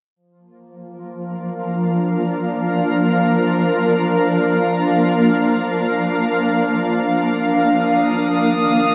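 Ambient music in free time, this short cut from a longer piece feels peaceful and weightless. A shimmering pad sits up front from 1.2 seconds, holding sustained chords with a slow attack and long release, its ethereal tone carrying an octave-up shimmer and a granular, wave-folded grain under chorus. The harmony rests on Bb before moving to Ebmaj7(no3) at 7.7 seconds. At 8.0 seconds a drifting glass-harmonics texture appears high above, a bright, calm sine tone with glassy overtones that fades in slowly and lingers. The whole recording is bathed in a huge, wet reverb with an 8.4-second tail and carries the character of cassette tape.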